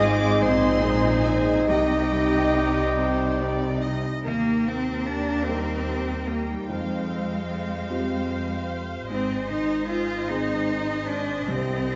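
An up-front cello section with a clear tone carries the bass of this hopeful, moving film-score excerpt in a rubato 6/8 at around 46-51 BPM. Alongside it play a lush double bass section, a warm grand piano with deep bass, a smooth-topped viola section and a very quiet, ringing harp playing arpeggios. Two bowed violin sections sing with vibrato: a close, even section carries the melody high above, and a distant, focused one plays a second line. In the opening, an airy flute group, a soft-attacked cor anglais, a present clarinet and a mellow French horn section holding chords add colour, all dropping out by 3.9 s. The orchestra sits in a wet scoring-stage reverb as the harmony moves from Ab through Cm, Eb and Fmadd9 back to Ab.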